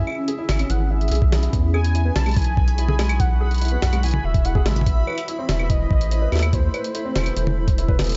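IDM excerpt at 144 BPM, cerebral and melancholic, where a round, deep analog bass sits up front beneath a felt-muted upright piano's arpeggios with dub echo, a velvety synth lead melody with chorus and delay, a blurred granular cloud pad with sidechain pumping, a gritty, pitched-up jungle sampler-style kit of claves, hi-hat, high-tuned snare and toms, a thumpy electronic kick entering at 1.2 seconds, and a bubbling stepped-filter texture from 1.5 seconds in the background, moving through C#m, Eadd9 and Amadd9 in a dark production before a drum fill at 8.0 seconds.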